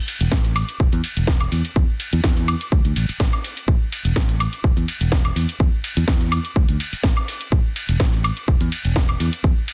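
Filtered disco house at 125 BPM with a funky, sunny mood, cut from a longer piece: a punchy, tape-warm electronic kick sits loudest and up front, while a fingered electric bass ranging from E1 to E2 pumps under sidechain, and a layered house drum kit with a cracking snare, hi-hat, ride cymbal, shaker and woodblock breathes with sidechain pumping on its percussion, hats and cymbals, all in a dry, dense, heavily limited modern master.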